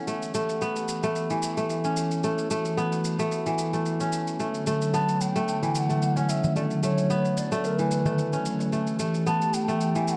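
Earthy and warm, this organic downtempo piece moves at 111 BPM in 4/4 with a light swing on the sixteenths, set in A mixolydian and cut from a longer piece. A smooth, detuned sawtooth analog pad with chorus holds sustained chords throughout under a filter sweep, while an up-front acoustic kora rings out crisp fingerpicked arpeggios through a low-pass filter and delay. A gritty, tape-flavoured shaker sits low in the mix, its sampled sound re-recorded in a large room. At 4.9 seconds a distant, airy bass bansuri enters with a mellow, unsteady melody full of vibrato and digital delay, and a small clay-shell darbuka joins quietly in the background from 5.1 to 9.5 seconds. The harmony moves from A7sus4 to Dmaj7 and settles on A5, all bathed in a lush hall reverb within a dark production.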